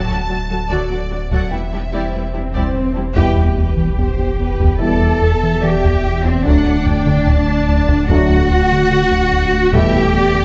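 This tense, relentless cut from a hybrid orchestral and electronic film score in E minor at 73 BPM opens with a lush, even violin melody over a distant, expressive second violin line, an intense viola section, a soft, felt-muted upright piano with digital delay and audible action noise, and a deep sine-and-triangle sub bass with octave; a bowed cello section with vibrato enters at 0.1 s, a very quiet taiko ensemble with hard sticks follows, an electronic swell and sub drop sits in the background, and at 3.2 s dark French horns and close-miked trombones add tight sustained chords while a rubbery, hollow square-wave bass riff and a smooth studio double bass section join, set in moderate scoring-stage reverb.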